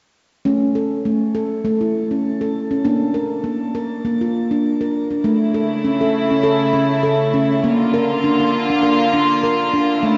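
A ringing, close-miked handpan opens this meditative, hypnotic world piece at 100 BPM with gently swung fingertip arpeggios over alternating A and Bb chords, its nitrided-steel tone touched by shimmer reverb, and at 5.2 s a rich, soft-attack studio string section joins with pure, floating sul tasto chords, the pair bathed in a lush, dreamy hall that leaves this fragment of a longer piece hazy and soft-edged.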